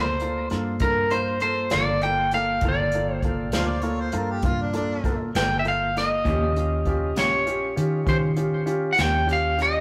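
Slow blues in 12/8 at 66 BPM in G minor, soulful and brooding, where a twangy, slightly broken-up electric guitar carries the melody up front with tape echo over a very quiet clean electric guitar, a woody upright piano with audible action noise, a round, foam-muted vintage electric bass and a brushed jazz kit with a boomy kick, while a mellow harmonica with light vibrato adds a brief second line from 3.5 to 5.2 seconds, all in a rough rehearsal-room recording with warm saturation and a stone room's reverb as Gm7 shifts to Eb7 at 6.3 seconds in this short excerpt cut from a longer piece.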